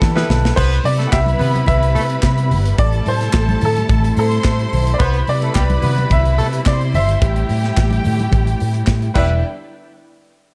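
A drum fill and a full-band accent open this sultry, glamorous disco piece at 108 BPM in a straight 4/4, before the groove settles in at 0.6 seconds over a cycle of Em7, Cmaj7 and Am7 chords. A punchy kick, a medium-tuned snare, airy hi-hat, handclaps and crash cymbal come from a polished acoustic kit that sits up front in a small room. Beside it, a picked electric bass run through an envelope filter is amped and prominent, while very quiet congas with thick skins add close, dry hand percussion. A clear, slightly worn grand piano carries the melody, and a dark, woody string section plays a lush second line with bowed, sul tasto vibrato. A biting, focused symphonic string section holds sustained chords in the background, and a horn section adds punchy stabs with a smooth top and light vibrato. The whole mix has a dark, warm production with light studio reverb, and the band drops out at 9.4 seconds as this excerpt, cut from a longer track, moves into a brief closing section.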